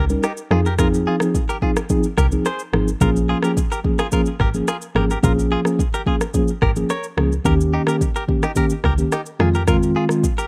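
A rough home-demo mix with digital ambience frames this sultry, hypnotic afrobeats excerpt at 108 BPM in Bb dorian, its chords moving through Eb7, Fm7 and Bbm7. An up-front electronic drum kit with a deep, tape-warm kick, rim click and shaker plays alongside a woody, punchy log drum bass with a dark, fast-attack decay and a noise layer. A mellow, clean tine electric piano sounds through built-in speakers, and a bright, twangy, direct-recorded electric guitar plays a compressed, picked riff with delay.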